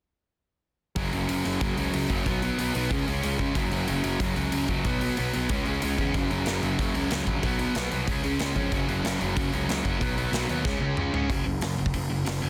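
A bright, compressed distorted electric guitar sits up front in this energetic, upbeat punk rock excerpt, its picked riff driving the music until it drops out at 11.3 s. A second, sludgy overdriven guitar plays a warm picked riff alongside it, while a growly fuzz bass, direct and amped, and a big studio drum kit with a punchy kick and medium-tuned snare push the straight 4/4 feel, the drums breaking into a fill at 10.7 s. Light reverb colours a dense, heavily limited modern master.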